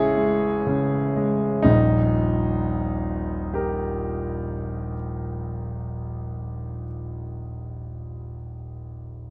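A clear concert grand piano sits up front in this luminous, hazy impressionist classical fragment, its deep bass and long sustain spanning Eb1 to E5 in a slow, rubato 3/4 at 31 BPM. The opening Amaj7 slows down before the harmony moves to Eb at 1.6 seconds, and the piano continues alone until 9.3 seconds. Close, detailed microphones capture its natural tone within a moderate recital hall reverb.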